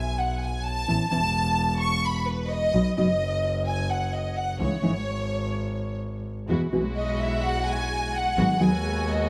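A lush, vibrato-rich violin section with tape echo carries this melancholic, sultry rubato tango fragment, over a biting, earthy bowed double bass, a dark, thumb-plucked nylon-string guitar with audible finger squeak entering at 0.9 seconds, and distant, smooth symphonic string stabs from 6.5 seconds, all captured by close, detailed microphones in light reverb.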